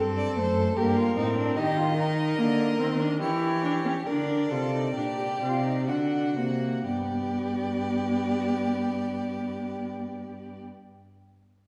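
A short excerpt of a baroque-style fugue for string quartet, set in a reverberant recital hall and heard from further back in the room, so the bowed strings carry a soft halo of wet reverb. The piece is in G minor and 3/4 time, moving at roughly 60-75 BPM with a serious, driving character, and the tempo slows from 0.4 to 6.9 seconds. The first violin carries the melody with a rich, smooth vibrato, while the second violin plays a softly attacked, expressive second line marked by portamento. The viola fills in the accompaniment with vibrato and gliding portamento, and the cello anchors the bass with an even, up-front tone. The harmony moves through D7, G minor, Eb, Em6 and G minor again before returning to D7 and landing on G major at 6.9 seconds, where a new section begins.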